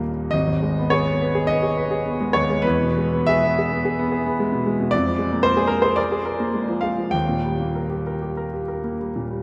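A warm concert grand piano opens alone, set up front in a vast, echoing space whose long cathedral reverb trails each sound. This short excerpt of a romantic classical character piece for solo piano feels stormy yet bittersweet, its beats uneven and pushed and pulled with rubato in a four-beat metre. The harmony travels from G#m to E, then A#7/E#, settling on D# at 7.1 seconds. The instrument reaches from a deep bass G#1 up to G5, with a smooth, vintage tone. Cut from a longer work, the fragment runs to 9.4 seconds.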